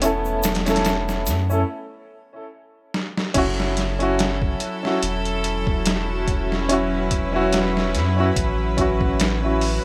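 Light reverb and digital ambience frame this dark, cinematic trip hop excerpt with a loose swing. An up-front upright piano, woody and polished, carries tremolo, 12-bit sampler grit and tape echo over earthy bowed chamber strings with subtle vibrato, a deep, round dub sub bass, and a compressed, pitched-down sampler-style drum kit with a thumpy kick, while a bright egg shaker sits in the background until 1.7 s. A break follows with a drum fill at 2.9 s, and from 4.4 s a very quiet reversed, granular texture drifts in, dreamy and mellow.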